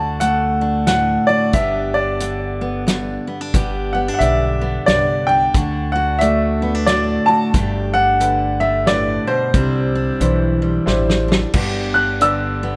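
Heartfelt and sunny, this honky-tonk and classic country excerpt sways in a swung 3/4 feel. An upright piano carries the melody up front with a brilliant, woody tone, its action noise audible and a tape echo trailing its high phrases. A picked steel-string dreadnought guitar adds full-bodied, fresh-stringed accompaniment, while a pizzicato upright bass on gut strings supplies a dark, thumpy bottom. A natural drum kit from a small room, with a fat snare, punchy kick, hi-hat and crash, enters at 0.2 seconds and plays a fill from 10.9 to 11.5 seconds. At 4.2 seconds a clear concert grand piano joins with deep bass and short sustain, and the chords move from D to G, back to D, then through Gadd9 and Cadd9 before landing back on G under a light reverb.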